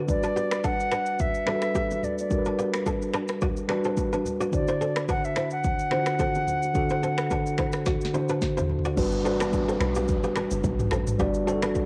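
Afrobeats with a romantic, breezy mood and a lightly swung groove, this short cut from a longer piece rests on an up-front, mellow tine electric piano with a cassette-tape colour, while a bright, fingerpicked kora riff rings through tape echo and a pure silver concert flute carries the tongued melody with vibrato. An electronic afro-pop kit with a deep kick and sharp snare drives the groove beside very quiet, close congas and bongos, and a drum fill at 7.9 seconds leads into a new section at 9.0 seconds. There a round, dark log drum bass with a fast attack arrives, joined by a downlifter in the background, the whole piece set in light digital ambience with the character of a home cassette recording.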